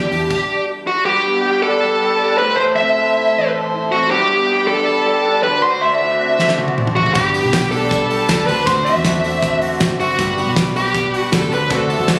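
A dark, distorted lead guitar sits up front, carrying a bluesy overdriven melody with analog delay through this youthful, breezy slice of jangly indie pop in G major at 158 BPM. Beneath it, a bright, twangy electric guitar through a small old amp plays slightly broken-up arpeggios, thickened by ensemble chorus and its own delay, while a reedy, breathing harmonium enters at 1.1 seconds with sustained chords. After a brief opening blip from the rhythm section, the loose indie kit returns with a fill at 6.4 seconds, bringing its fat snare, punchy kick and dark cymbals. From about 7.1 seconds, a picked steel-string acoustic guitar with audible finger squeak sits in the background, along with a jingly tambourine and a round, foam-muted vintage bass. The chords move from Em7 through G, Am and D7 before settling into a G and D7 alternation. The sound has a moderate echo-chamber reverb and a compressed, roomy, phone-captured character, and the passage is cut from a longer piece.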